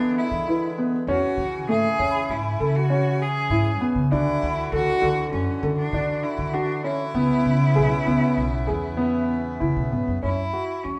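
The recording has a roomy, reverberant sound, heard from somewhat back in the space, in this short cut from a longer piece of contemporary chamber music. It moves at 99 BPM in an uneven 5/4 with a straight feel, tuned to A4 = 444 Hz, and the mood is urgent yet pensive. Up front, a single bowed cello carries the melody with a clear, biting, intense tone, vibrato and a smooth top, while a pizzicato upright bass with steel strings sounds woody, growly and bright beneath it. A warm baby grand piano plays long-sustaining arpeggios, and a hand-pumped harmonium holds reedy, nasal, breathing chords with a boxy small-room character until about 10.2 s. In the background, a large celesta adds a bell-like, delicate, ringing texture. The harmony passes from E7 through Amaj7/E, D and C#m7 before arriving on F#7(no3) at 10.2 s.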